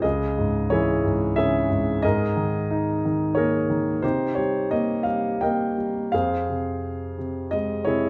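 In a triple metre stretched by free rubato, this short fragment of a lyrical classical solo piano piece unfolds with a brooding, cool mood. A single concert grand piano carries the whole passage from start to finish, ranging from Db2 up to G5. Its sound is intimate and smooth with a vintage character, placed up front so that the noise of the action is audible alongside the deep bass. The harmony moves through Dbm, Absus2 and Cm7 before settling on Fm at 6.1 seconds, and the cut comes at 8.1 seconds. A moderate recital hall reverb gives the instrument a sense of space around its close, warm tone.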